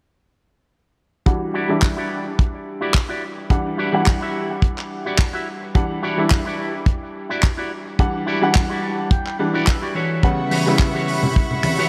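A dreamy, reverb-soaked hall wash surrounds this sleek, sensual nu-disco excerpt at 107 BPM in E dorian, where a tight, up-front kick and a dry, damped 70s kit of finger snaps, handclaps and hi-hat carry a lightly swung groove under a bright, worn baby grand piano pumping through a filter sweep with delay, a dark, picked envelope-filtered guitar riff that breaks into a clean fill at 8.6 seconds, and, as Em9 gives way to A13, a rich, earthy chamber violin section entering at 10.2 seconds just before band-limited congas with soft hands join at 11.2 seconds.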